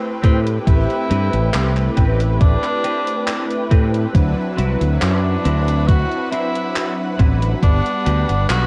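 A slow, straight 69 BPM pulse in 4/4 opens the groove, with a thumpy electronic kick arriving at 0.2 seconds alongside a gated 80s drum machine that adds handclaps and hi-hat under its gated reverb. This short vaporwave clip, cut from a longer piece in A dorian, feels hazy and melancholic, drifting from Am9 to D13 at 4.1 seconds and on to Gmaj7. A fretless electric bass sits up front in the low register, while detuned sawtooth synth brass, dark and round, fills the middle with lush chorus and tape echo. Behind them, a rich chamber string section holds bowed chords roughened by 12-bit sampler grit, and a clean, picked hollow-body guitar repeats a compressed riff in the background through ensemble chorus, the same grit and tape echo. At the center, a clear tenor saxophone carries the melody with light vibrato and a smooth top, trailing tape echo. The mix is dry and carries a cassette-tape character, and the kick drops out at 7.8 seconds.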